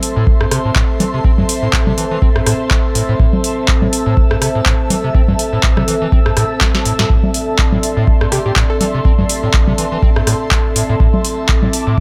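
A deep, up-front electronic kick and a booming analog drum machine with crisp snare, metallic hats, handclaps, congas and rim clicks drive this hypnotic, gritty acid house groove, swung on the sixteenths, with a drum fill at 6.6 seconds. Beneath them a squelchy, resonant overdriven acid bass riff with a filter sweep and lush chorus pumps against the kick alongside a moody, detuned dark analog pad holding sustained chords and a breathy, phased airy pad that shimmers above. A punchy plucky unison lead with tape echo appears only briefly in the background at 8.3 seconds, all under a light reverb in this cut from a longer track.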